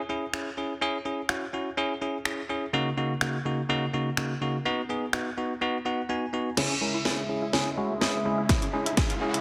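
A dense, heavily limited modern mix in a lush digital hall carries this bittersweet, energetic dance-pop excerpt, opening on a barky, bell-like tine electric piano that pumps against a house kit with a punchy kick, a cracking, softly clipped snare, finger snaps, hi-hat and crash. A silent gap at 5.6 seconds is filled by an electric piano fill. From 6.6 seconds a build-up arrives with a drum fill and filter sweep, as a woody, round synth pluck plays arpeggios with tape echo in the background. A thick, detuned unison pad enters shortly after to sustain chords, and a very quiet riser joins near 7.9 seconds.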